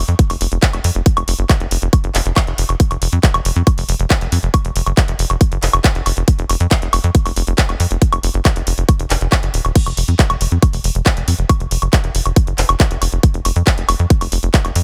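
Psychedelic trance with a hypnotic, alien mood, this short cut from a longer piece pairs a tight, driving sequencer bass of sawtooth and square-wave tones, with a plucky filter, fast attack and moving notch, against a punchy, overdriven electronic kick and a layered techno kit of crash cymbal, handclaps, hi-hat and woodblock carrying a large-room character, all kept up front and dry.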